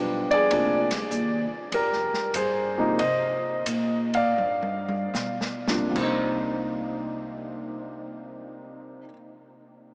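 Drenched in a huge ambient reverb that places this small-speaker excerpt in a vast, echoing space, a moody, late-night jazz piano trio in C minor swings at 70-101 BPM and slows down as a mellow, intimate baby grand sits up front with audible action noise and long sustain, a woody pizzicato upright bass with steel strings holds the low end, and an airy, polished drum kit with dark cymbals and a boomy kick plays a fill from 4.4 seconds before stopping at 6.2 seconds, leaving piano and bass to settle on a closing Cm9.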